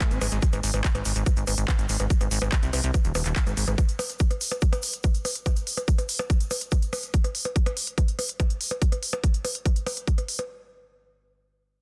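Psychedelic trance at 143 BPM in G# major, this hypnotic fragment of a longer piece is driven by a tight, overdriven electronic kick and a layered techno kit of handclaps, smooth hi-hats and percussion blips, both placed up front. A punchy, funky analog bass with a sawtooth and pulse-wave tone and a fast-attack filter pluck sits forward between 0.1 and 3.8 seconds. A grainy, bright egg shaker, very quiet in a live room, runs until 7.1 seconds, all within a dense, heavily limited modern master with digital ambience.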